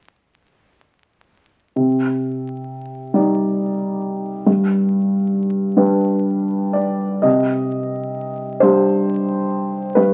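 Wistful and melancholic, this short neoclassical minimalist fragment is cut from a longer piece and drifts in a slow 6/8 with uneven, rubato beats. A lone upright piano carries everything, entering at 1.8 seconds and playing through to 10.1 seconds, its tone woody and slightly detuned with a long sustain that lets each chord hang. The harmony moves from C minor add nine to G and back to C minor add nine as the opening passage gives way to a second section at 7.2 seconds. The piano sits present and up front, spanning from low G2 up to E-flat 5, in a dry room with little reverb. The sound carries the surface of a very old 78 rpm record, with vinyl crackle lending the playing a faded, time-worn quality.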